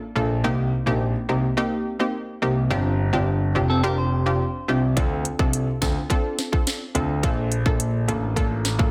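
An overdriven, electronic island pop drum kit with a tight kick, sharp snare and metallic hats enters at 5.0 seconds in this sultry, hypnotic dancehall excerpt at 106 BPM in C dorian, joining a concert grand piano that carries a deep, intimate bass line with audible action noise and long sustain, a bright, detuned sawtooth analog pluck with chorus that supplies accompaniment over Cm7, G7sus4, Dm7 and Bbmaj7, and a clean, picked electric guitar that plays arpeggios from 3.7 to 4.8 seconds, set in digital ambience with a dense, heavily limited modern master.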